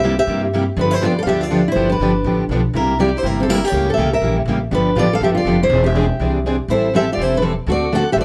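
Acoustic string swing in the jazz manouche style, this swinging, charming excerpt has an up-front, full-bodied picked steel-string guitar with old strings carrying the melody through a plate reverb, while a bright, fresh-strung second guitar adds a lower line with audible finger squeak. Two more picked guitars supply accompaniment: a dreadnought with its own finger squeak, and a plugged-in parlour guitar sitting in the background. Underneath, a dark, thumpy upright bass on gut strings is plucked through changes that run from C7 to G7, back to C7, then C#dim7, G7 again, E7alt, Am7 and D7, all in a light room ambience.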